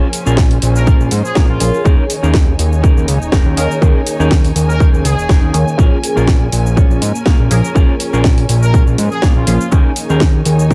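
This filtered disco house cut opens on a funky, detuned polysynth comp with chorus and phaser, a clean semi-hollow electric guitar riff, and muted, veiled studio strings sitting in the background with a touch of vintage 12-bit sampler grit. The house kit arrives almost at once with hi-hat, shaker and a cracking snare, followed at 0.3 seconds by a fat, saturated analog bass that sits up front. A punchy, tape-warm electronic kick lands at 0.4 seconds, and the bass, comp, guitar, strings, trumpets and kit all carry sidechain pumping at a swung 122 BPM in Bb minor. From 0.8 seconds to 9.8 seconds a distant, roomy trumpet section carries the melody with light vibrato and delay. The harmony moves between Bbm7 and Eb7sus4, giving the groove a nostalgic, sensual mood inside a digital ambience.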